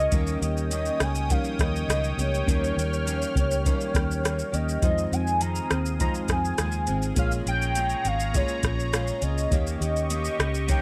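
This hazy, wistful indie pop excerpt in a bedroom pop vein moves at 102 BPM in a straight 4/4, drifting through Eb7, Fm7 and Bbm7 chords. A velvety sawtooth synth lead carries the melody through chorus, plate reverb and delay over a full-bodied picked acoustic guitar with audible finger squeak, a worn, slightly out-of-tune electric piano lightly overdriven as if through built-in speakers, and a swirling, detuned phased pad. Up front, a round, foam-muted fingered bass and a tape-warm vintage rhythm box with deep kick, metallic hats, rim click and shaker anchor the groove, all set in a moderate studio room.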